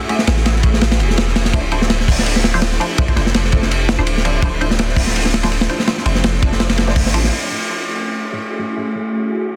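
A dense, heavily limited mix with little reverb carries this raw, atmospheric drum and bass jungle cut at 166 BPM, where a crunchy, saturated breakbeat kit with dark cymbals and a tight kick sits up front over a deep, decaying 808-style bass with tube saturation, while a silky string machine with phaser, ensemble chorus and 12-bit grit holds F#m9 and Dm9 chords and a muted, detuned dub chord stab with dub echo sits in the background, until the drums and bass stop at 7.3 seconds and a filter sweep passes over the strings.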